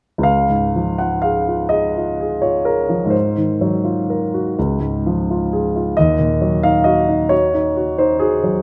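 A grand piano sits up front in a concert hall, where a moderate reverb lets each chord linger in the air. This short excerpt, cut from a longer romantic nocturne for solo piano, carries a tender, serene mood and unfolds in a lilting 6/8 with a free, rubato feel. The piano's tone is warm, and its range stretches from deep bass notes up into the upper middle register. The harmony moves from the home chord at 0.3 seconds to a rich thirteenth chord at 3.1 seconds, settles back home, then turns to a minor chord at 6.0 seconds. The playing stays intimate and unhurried throughout, with the hall's resonance softening the edges of every phrase.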